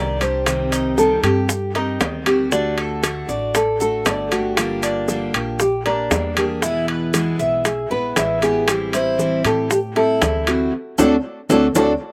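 Dry, open-air sound with little reverb frames this warm, danceable Cuban son and guajira excerpt, where a thumb-plucked nylon-string guitar with slapback echo carries the melody over a picked dreadnought steel-string guitar, bright, metallic double-stringed tres arpeggios and woody pizzicato upright bass, while grainy maracas, ringing metal-shell timbales and tight, high-tuned bongos (the tres and bongos also touched with slapback) drive the groove into a band accent from 10.7 seconds and a closing drum fill.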